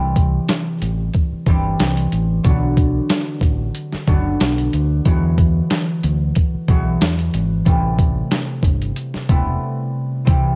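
A ringing, fingerpicked concert harp with a cassette-tape haze and a round, saturated deep dub bass open this dark, tough boom-bap hip-hop excerpt at 92 BPM in A dorian, joined at 0.2 s by a gritty, pitched-down sampler drum kit with a thumpy kick, medium-tuned snare and hi-hat swinging up front over C, Bm, Eadd9 and Am7 chords in a dry home-cassette sound before a brief break at 9.6 s.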